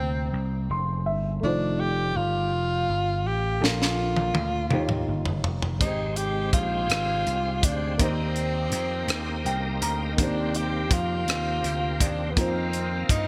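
Slow gospel in 6/8 at 55 BPM, jubilant and uplifting, this excerpt from a longer piece opens on a C7 chord with a breathy tenor saxophone carrying the melody up front, its subtone, scooped notes and vibrato trailed by a delay. A dark, mellow grand piano with short sustain plays the accompaniment and adds a fill at 0.3 seconds, while a growly, amped vintage slap bass sits punchy and up front underneath. At 3.6 seconds a tight funk drum kit enters with a fill, its high-tuned snare, tight kick, hi-hat, rim click and toms coloured by gated reverb. A bright tonewheel organ joins at 5.8 seconds with full, shouting sustained chords, key click and a slow rotary speaker with chorus vibrato, and it shares a fill with the piano at 9.1 seconds. The harmony moves through chords such as Bbmaj7, Abmaj7 and Eb6 before settling on F7sus4, all within light small-room ambience and a bright 1980s-style digital production.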